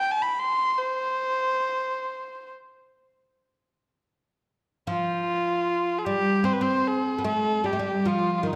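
Longing and soulful, this short Persian fragment in a straight 4/4 opens with a single bowed kamancheh carrying the melody alone, its tone rich and nasal with a biting, airy bow and light vibrato. At 4.9 s a plectrum-plucked fretless oud enters beneath it with a mellow, woody second line, its double strings sounding deep, and both instruments sit up front. A wet recital hall reverb surrounds the pair until the cut at 8.6 s.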